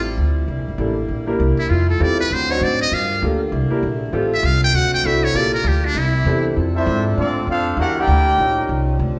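Heard as a band playing live in one room under a wet, reverberant studio ambience, this brassy, swinging big band excerpt rests on a woody, pizzicato upright bass and the mellow, smooth-topped chords of a saxophone section throughout. A buzzy, thin trumpet with a metal mute carries the melody with vibrato and scooped notes from 1.6 seconds, accompanied by an intimate concert grand piano whose action noise is audible. At 6.7 seconds a bright trombone section enters in the background on a second line, as a clear, up-front trumpet section takes over the melody.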